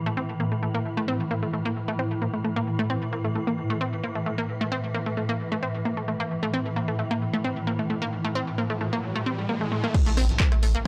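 A bright, detuned sawtooth pluck in unison sits up front in this driving peak-time techno track, playing a riff between A3 and C4 with a warbling, vintage edge, tape echo and sidechain pumping. Beneath it, a swarming drone on A2 to E3 holds an A5 chord from the opening; it is wave-folded, granular and tense, with its own built-in reverb and the same pumping. At 132 BPM in straight 4/4 and A phrygian, the mood is industrial and hypnotic, and a background riser builds from 7.9 seconds toward an impact at 9.9 seconds. At that moment a punchy, tape-warm analog kick lands up front, joined by drum machine crash cymbal, handclaps, hi-hat and rim click, with pumping on the hats and cymbals. A thick, overdriven triangle sub bass on A1 enters through a low-pass filter just before this piece, cut from a longer track, breaks off, all in a dry, gritty hardware recording.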